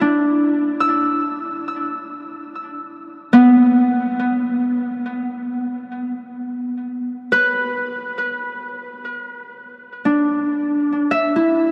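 A fingerpicked Celtic harp rings out alone and up front, ranging from B3 to E6 in free time and resting on a Bmadd11 chord, with delay trailing its acoustic tone. The harp sits in a dreamy, reverb-soaked mix with an 8.5-second decay and a cassette-tape character, giving this ambient piece a weightless, warm mood. The 11.7-second clip is cut from a longer work.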